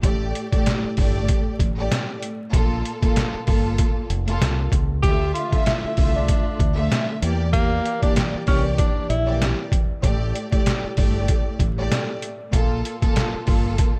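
A gritty, pitched-down sampler-style drum kit with a thumpy kick sits up front from the first moment of this tough, moody boom-bap hip-hop excerpt, alongside a round, deep fingered electric bass and a lush bowed string section whose expressive vibrato carries a filtered cassette-tape tint. From 5.0 to 9.4 seconds a breathy tenor saxophone plays a mellow solo with scooped notes, subtone and a slapback echo. The swung groove sits in a dark production with light studio reverb and vinyl crackle.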